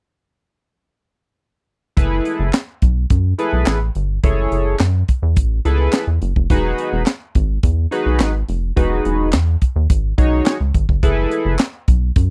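A dry, close recording in a 1970s studio style opens this danceable, slick slice of early-eighties boogie funk, moving at 106 BPM in a straight 4/4 in F# dorian, with chords shifting from F#m11 to Emaj9 and back. From 2.0 seconds a tight, polished drum kit sits up front with handclaps, hi-hat, a high-tuned snare and a tight kick, beside a rubbery, bouncy square bass whose dark, resonant filter pluck and moving notch give it a hollow bounce. Also from 2.0 seconds, a glossy, chorused polysynth of detuned pulse and sawtooth tones with a sub octave adds evolving, retro chords until 11.6 seconds, while bass and drums carry on to 12.3 seconds in this fragment cut from a longer piece.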